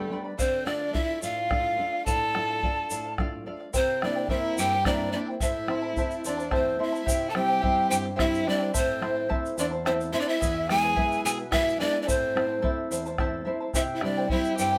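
Earthy and festive, this Andean folk piece moves at 72 BPM in a straight 6/8 in A minor, tuned slightly low to A4 = 438 Hz, and is cut from a longer performance. A breathy bamboo pan flute carries the melody up front, its tongued notes showing chiff and vibrato. Beneath it a single violin plays a clear, nasal second line with light vibrato and an airy bow. A shimmering fingerpicked charango with double strings and a dark, full-bodied nylon-string guitar, thumb-plucked in classical style, fill out the accompaniment over chords moving from Dm through C7, Am, C and E before returning to Am and closing on C. A deep, close bombo and a grainy, vintage tube shaker enter at 0.4 seconds, and the guitar adds a fill from 6.2 seconds leading into the second section at 7.1 seconds, all within a moderate studio reverb.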